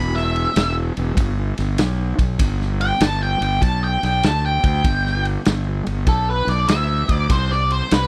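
A dry, close 1970s-style studio sound frames this heavy, smoky blues rock power trio piece with a swung southern rock feel: a picked, distorted octave-fuzz lead guitar solos from the start over Em moving to G until a break in the chords at 7.3 seconds, a round, overdriven fingered bass sits up front beneath it, and a raw garage drum kit with a punchy kick, medium-tuned snare and ride cymbal enters at 0.2 seconds in a gritty, bright stone-room tone with a rolled-off top.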